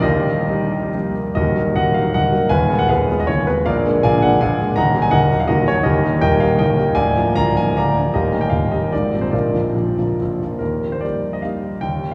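Dotted rhythms drive this romantic triple-time dance in 3/4, taken with rubato at 127-174 BPM, a graceful, rustic excerpt from a longer classical piece for solo concert grand piano that plays throughout its 12.1 seconds. It opens in Eb minor and brightens to Eb major from 5.9 s, moving through chords such as Fdim/Eb, Bb7 and Fm/Ab before settling on Eb at 10.6 s. The piano is intimate and up front, with deep bass, long sustain and audible action noise, set in a drenched cathedral reverb.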